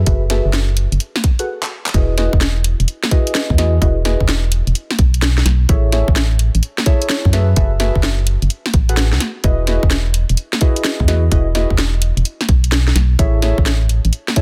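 A swung two-step garage groove at 128 BPM in 4/4 drives this soulful, sunny UK garage excerpt in E major, with a tight, tape-warm electronic kick sitting up front beside a layered garage kit of handclaps, hi-hat and a cracking, overdriven snare. Underneath, a hollow, organ-like FM bass with a fast attack and dark decay pumps against the sidechain, also placed up front. Deep, full-bodied chord stabs with a nasal, filter-plucked edge float above, softened by chorus and tape echo as they move through F#m11, Emaj9 and Amaj7. After a brief stop at 1.5 seconds and a drum fill at 1.6 seconds, the drop lands at 1.9 seconds and carries the groove to the end. The mix is dry, with little reverb, and the master is dense and heavily limited.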